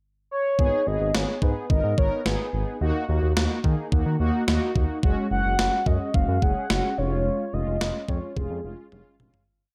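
A mellow, horn-like synth lead with a warbling vintage tone carries a motif-based melody of call phrases, entering in the pickup at 0.3 seconds and coloured by chorus and slapback echo. Beneath it, dark, brassy synth brass plays triad chords in eighths with a filter sweep and chorus, while a smooth, nasal sequenced synth bass sits up front and a thumpy 12-bit drum machine keeps a straight beat, its kick, snare and toms bathed in gated reverb. This short, driving, nocturnal synth-pop piece moves from G#madd9 through D#m and F#sus2 to C#/E#, fading out from 7.3 seconds and closing on a drum fill at 8.9 seconds.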